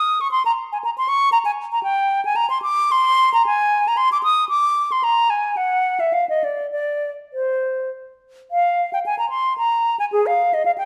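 An airy concert flute plays alone from the very first moment, its soft attacks and expressive vibrato shaping a flowing yet grave line in a baroque-style fantasia in triple metre, taken with a free, rubato feel. Close-miked and up front, the flute sits inside a wet recital hall reverb. The opening idea returns at 8.5 seconds before this short fragment of a longer piece breaks off at 10.9 seconds.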